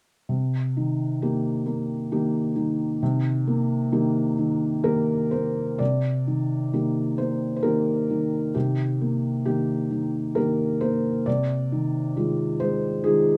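Set in a moderate studio ambience, this intimate, melancholic neoclassical minimalist excerpt features a solo felt-muted upright piano, soft and mellow with audible action noise up front, moving in a rubato 3/4 from a Cm7 into a new section at 5.8 seconds and settling on an Ab6/C at 11.3 seconds.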